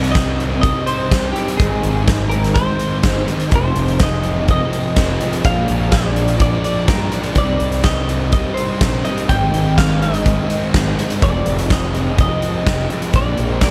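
A hazy, melancholic shoegaze and dream pop rock fragment of 13.7 seconds opens with everything at once: an up-front arena drum kit with a fat snare, hall ambience and punchy kick drives a straight 4/4 under an overdriven, fuzzed fingered bass, while a dark, distorted fuzz guitar with lush chorus and a raw overdriven garage guitar trailing reverse reverb churn riffs in the background, and a bright, compressed clean electric guitar sings the melody through chorus and analog delay over a Cm, Ab, Fm7, Bb7 progression that returns with an Abmaj7 color, all set in a light small-room reverb.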